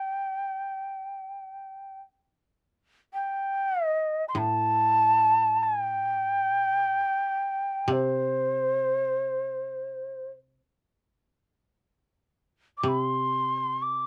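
An airy, up-front shakuhachi with vibrato and a crisp, chiffy attack carries the melody in free time through this still, solitary fragment of traditional Japanese chamber music, joined at 4.3 seconds by a woody koto plucked with fingerpicks in a low, quieter accompaniment, all captured close and detailed in a dry room.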